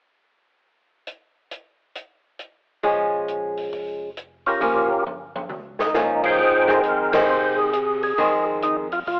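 Heard through the boxy, telephone-like sound of a home cassette recording with moderate spring reverb and a small room, this short soul jazz organ trio excerpt swings at 135 BPM in F minor with a soulful, bluesy mood. An acoustic drum kit with dusky cymbals and a boomy kick opens alone at 1.1 seconds, and at 2.8 seconds a clean, compressed hollow-body archtop guitar plays picked accompaniment up front while a fat, key-clicking tonewheel organ bass sits in the background. At 4.5 seconds a lightly overdriven, percussive tonewheel organ takes the melody through a slow rotary speaker with chorus vibrato, moving from Bbm7 and Gm7b5 to Fm7, with a drum fill and a band accent along the way.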